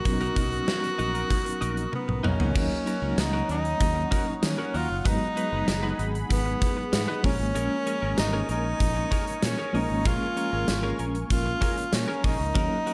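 A straight 4/4 groove at 96 BPM drives this short, nostalgic slice of glossy 1980s-style pop, cut from a longer piece. Up front, a gated 80s drum kit with a punchy kick, medium-tuned snare, bright cymbals, tambourine and toms sits in an airy stone room with gated reverb, and a drum fill from 1.9 to 2.6 seconds leads into a new section. A fingered electric bass adds a direct, warm low end, while a mellow tine electric piano, worn and slightly out of tune, plays accompaniment through a combo amp with medium tremolo. A clear tenor saxophone carries the melody with light vibrato, and in the background a twangy, compressed twelve-string electric guitar picks a riff with subtle chorus as a swirling, detuned sawtooth pad holds sustained chords under phaser and chorus. The harmony moves from Bmaj7 to D#m7 at 2.6 seconds, then through G#m7 and A#m7, with light reverb and a faint mains hum around the whole mix.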